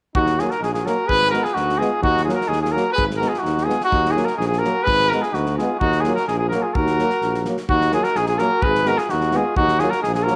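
Balkan folk in a brass band setting, this restless, virtuosic excerpt moves at 127 BPM in a straight 2/4, cut from a longer piece and set in Eb harmonic minor. A clear trumpet carries the melody up front with light vibrato and a distant, roomy character, while a warm flugelhorn with a soft attack shapes a second line in the background. A tuba with light vibrato holds down the bass, and a French horn with a slightly vintage tone joins a euphonium from 0.4 seconds to fill out the accompaniment behind them, all in a classical style. A modern acoustic studio kit keeps time with a tight kick and medium-tuned snare. The harmony rocks between Ebm and Abm across two statements of the same section, the second beginning at 7.7 seconds, and a moderate echo chamber reverb lends the brass a spacious depth.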